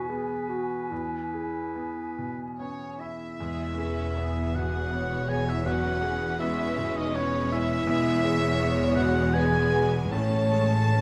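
Set in a reverberant recital hall, this hopeful, moving cinematic excerpt in a rubato triple metre opens with a bright grand piano, its action noise audible, beneath a close-miked oboe, a dark, distant clarinet and an airy flute; a rich chamber violin section and a mellow, tight French horn section join at 2.6 s, and from 3.4 s the symphonic strings enter, with smooth violins carrying the melody over lush violas, cellos and woody double basses, before the harmony moves to Amaj7 at 10.1 s.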